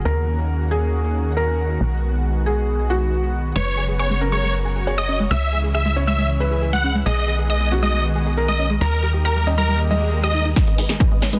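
This bittersweet, euphoric uplifting trance excerpt at 137 BPM in G# minor opens with a silky, evolving analog string pad and a tight, sawtooth sequencer bass, both pumping against the sidechain, while a soft, felt-muted upright piano with audible action noise plays a second line through delay. At 3.6 seconds a huge, detuned supersaw lead takes the melody, joined by a very quiet unison pluck and a nasal, chorused sequenced arpeggio in the background, over chords moving from D#m7 through F#sus4 and C#m to D#. A swell and riser come in at 9.9 seconds, and at 10.6 seconds a punchy, tape-warm electronic kick and an analog drum machine's snare and hi-hat enter with a drum fill on G#m, set in a dense, heavily limited master with light reverb.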